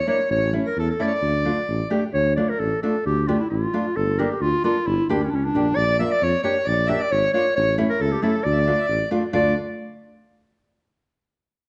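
Soulful yet festive, this klezmer passage in D harmonic minor moves at a straight 133 BPM in 2/4 and speeds up throughout, cut from a longer piece. A warm, smooth clarinet carries the melody up front in a classical style, with a reedy, hollow accordion adding a second line that drops out at 1.9 seconds and returns at 5.8 seconds. A full-bodied nylon-string guitar, fingerpicked in a deep classical manner, supplies the accompaniment, while a dark tuba sits up front on the bass with a jazz-style touch. The harmony moves from A to Dm, through Gm and Bb, and back to A and Dm. The sound carries a moderate recital hall reverb and the worn character of old cassette tape, with warbly pitch drift and a top end that stops at 11.0 kHz.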